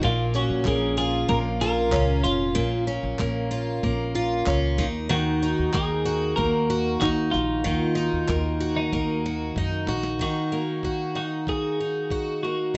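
A wistful, tender acoustic pop excerpt opens with a clean, twangy twelve-string electric guitar carrying the melody over a shimmering, octave-doubled picked twelve-string acoustic guitar with audible finger squeak, both bathed in plate reverb, while a woody pizzicato upright bass plays until 10.2 seconds and a gritty, compressed sampler-style drum kit with thumpy kick, snare, handclaps, tambourine and crash plays a fill from 8.9 seconds, all in a rough home-demo mix with a dull top end.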